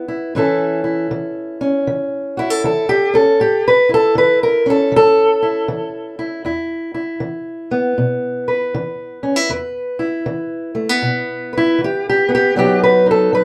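A small room's modest ambience surrounds this gritty, swaggering 13-second fragment of acoustic country blues at 79 BPM in 4/4 with a swung eighth-note feel, where a dark, boxy parlour steel-string guitar sits up front and is fingerpicked alone from E2 to B4 over A, E5 and B chords, tuned slightly sharp to A4 = 441 Hz.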